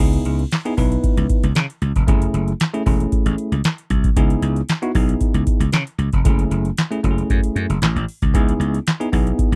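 A booming analog drum machine drives this dry, close-miked slice of early-eighties boogie funk, its deep kick, tonal snare, handclaps and metallic hi-hats sitting up front with a tape-warm edge from 0.1 s, and a short room sound on the snare, claps and hats. A growly, punchy slap bass and a clean, bell-like tine electric piano played through its built-in speakers share the foreground, cycling between C#m9 and F#m9 every couple of seconds in a straight 4/4. The mood is slick and late-night, and the clip is cut from a longer piece.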